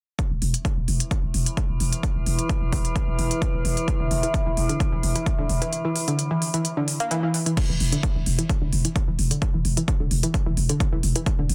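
A bright, detuned analog pluck riff with overdrive, chorus and tape echo enters at 4.0 s over a dark, driving peak-time techno groove of punchy, up-front kick, smooth sidechain-pumped hats and crash, and a growling, buzzy 808-style bass, while an eerie metallic FM drone hovers from 1.1 s until 7.6 s; the kick drops out at 5.7 s and returns at 7.6 s as the harmony settles on Dsus2/E in this dense, heavily limited excerpt.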